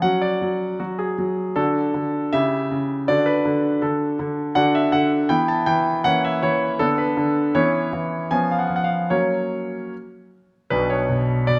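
This classical-period piano sonatina moves in a straight 2/4 at 79 BPM, with a restless, serious character. A clear concert grand piano plays solo for the whole 11.6-second excerpt, ranging from B1 to A5 with deep bass and a polished, up-front presence. The harmony opens on an F#5 and passes through D, C#dim and back to D before settling into B minor from 4.6 s. From there it threads through Em, F#7/E, Bm/D, C#m7/E and C#7/E#, reaching F# at 9.1 s and resolving to Bm at 10.7 s. A moderate recital hall reverb gives the instrument a sense of space around its sound, and the passage is cut from a longer piece.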